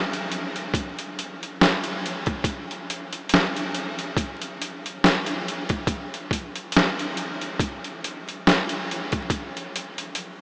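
A gritty, pitched-down boom bap drum kit sits up front, its compressed, sampler-style sound built on a thumpy kick, a medium-tuned snare and hi-hat, laying down a mellow, cosy hip hop groove at 70 BPM in 4/4 with a 16th-note swing. The kit is bathed in a huge, wet ambient reverb, and the recording carries vinyl crackle and a small-speaker character. A drum fill arrives at 9.3 seconds and carries the groove to the end of this short excerpt from a longer piece.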